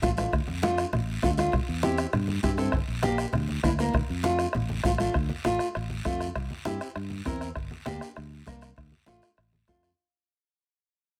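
A fingerpicked nylon-string guitar sits up front from the first moment, its classical tone carrying the accompaniment over a danceable, driving cumbia groove cut from a longer piece. Beneath it, a fingered electric bass plays round and punchy, direct in tone, while a soft-beater bombo gives a close, dry thump. Low-tuned congas with a bright, thin skin sit in the background, and a raspy guiro adds a scratching edge as well. The harmony cycles through Dm, C and Gm before returning to Dm, giving the straight four-beat pulse a minor-key lilt. A light reverb surrounds the ensemble, and from 5.1 seconds the music fades out through to the close at 10.0 seconds.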